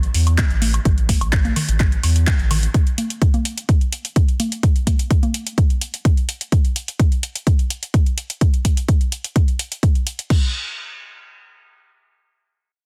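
A punchy, overdriven electronic kick sits up front from 0.4 s, driving this dreamy, expansive progressive house excerpt at 127 BPM in a straight 4/4. A round, deep analog bass with a fast attack and sidechain pumping holds the low end until 2.7 s, while dry, overdriven woodblock and congas play until 5.3 s over a layered, tape-warm deep house kit of crash cymbal, handclaps and metallic hi-hats. The mix carries little reverb, with a dense, heavily limited modern master.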